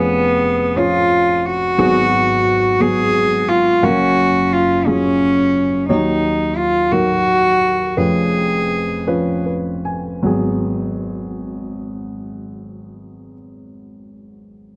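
A dry, close 1970s-style studio sound frames this melancholic, reflective acoustic folk-pop ballad in 6/8 and G# dorian, cut from a longer piece, where a rich, reedy bowed cello carries the melody with light vibrato up front until 9.5 seconds, a bright, compressed pedal steel guitar adds a background second line with slapback echo until 5.8 seconds, and a dark, mellow baby grand piano accompanies throughout at around 49-59 BPM, slowing down between 5.9 and 10.3 seconds.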